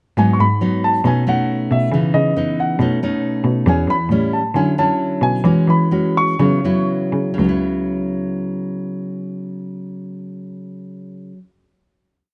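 Bossa nova in a smooth, wistful mood: in this complete short piece a dark, mellow concert grand piano sings song-like motifs up front until 6.9 seconds, while a fingerpicked nylon-string guitar with audible finger squeak lays down thumb bass and syncopated plucked chords, and a single bowed cello with nasal, boxy vibrato plays a dotted root-and-fifth bass line, the tempo slowing from 3.7 seconds before guitar and cello hold a final chord in a dry recording.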